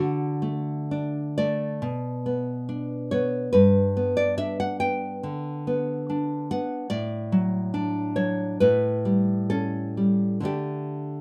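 A fingerpicked nylon-string guitar, woody and full-bodied with the warm character of old strings, sits up front as the sole voice in this romantic classical solo, set in D major at a rubato 59-73 BPM in 4/4. Its nostalgic, sunny mood unfolds over a progression from D through Bm and G to D/A and A7, settling on D5 at 10.5 seconds, with the guitar ranging from G2 to G5. A moderate studio reverb and a dark, warm production frame this brief passage cut from a longer piece.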